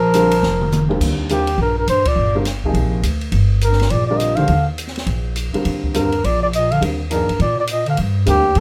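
Modal jazz with a spiritual, hypnotic mood, this short excerpt swings at a brisk 207 BPM in Eb major, moving from a Bb chord to a lingering Ebmaj9 at 1.0 seconds. A trumpet with a bucket mute carries the melody up front, its veiled, close-miked tone touched with light vibrato, while a mellow bass clarinet with a smooth top plays a second line beneath it. Upright bass supplies the low end with a woody, growly pizzicato sound on steel strings. A baby grand piano adds intimate accompaniment with short sustain and audible action noise. The open acoustic drum kit, heard in a natural studio room with dark cymbals, a high-tuned snare and a boomy kick, plays a fill from 0.4 to 1.0 seconds before the band hits an accent at 2.0 seconds, all set in light reverb.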